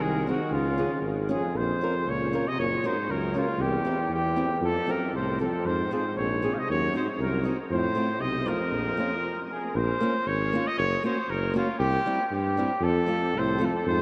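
This jolly, bouncy alpine folk dance band opens with trumpet, euphonium and tuba sounding together in Bb minor, at 117 BPM in a straight 2/4. The trumpet carries the melody up front with a punchy, classical-style tone that still sits distant and roomy, while the dark euphonium plays a smooth-topped second line with vibrato, both touched by tape echo. Beneath them the mellow tuba holds the bass with its own vibrato, and a fingerpicked old ladder-braced acoustic guitar enters at 0.3 s with a woody, boxy accompaniment on old strings. The band breaks off in a stop from 9.2 to 9.8 s, and the euphonium falls silent until it rejoins at 12.8 s. The harmony moves through chords such as Bbmadd9, Gb, C and F, and the whole mix is soaked in a huge ambient reverb with a cassette-tape haze that makes it feel dreamy. The recording is cut from a longer piece.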